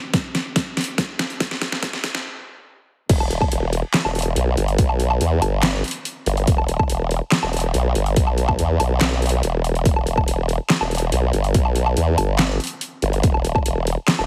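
Heavy wobble dubstep in a half-time feel, aggressive and menacing, cut from a longer piece. It opens with a build-up under a filter sweep, where the dubstep drum kit and the electronic kick play a drum fill until 2.2 seconds, followed by a brief stop before the drop lands at 3.1 seconds. From there the formant-sweep wobble bass takes over the low end, a sawtooth-and-sine tone shaped by a formant filter, with a fast attack, sustained notes, chorus and overdrive, sitting up front and compressed. The overdriven kit brings a deep snare, bright hi-hats, handclaps, crash cymbal and woodblock. The punchy, layered kick has a small-room character. The whole mix carries light digital reverb and a heavily compressed, radio-like sound with the low frequencies trimmed.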